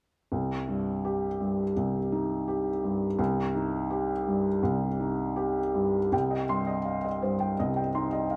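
This short fragment of neoclassical minimalist piano is melancholic and wistful, moving at a rubato 83 BPM in 4/4 and opening on C minor. A felt-muted upright piano plays solo from 0.3 to 8.4 seconds across a range from C2 to C6, its soft, mellow, boxy tone sitting up front and intimate, with the action noise clearly audible. A wet spring reverb surrounds the recording, and the music shifts into a new section at 6.1 seconds.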